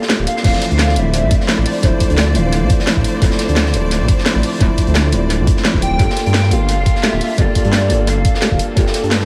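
A straight 173 BPM liquid drum and bass groove drops in at 0.4 seconds with a thumpy, pitched-up electronic kick up front, a layered garage kit with a cracking snare, and a gritty, saturated breakbeat kit tucked in the background, all under a deep, rumbling detuned saw bass, a soft felt-muted upright piano with audible action noise and dub echo, lush bowed symphonic strings holding Dm7 and then Gm7 from 6.0 seconds, and a hollow, woody clarinet-like synth lead with chorus and vibrato singing short melodic phrases, giving this echo-heavy excerpt a dreamy, lush mood.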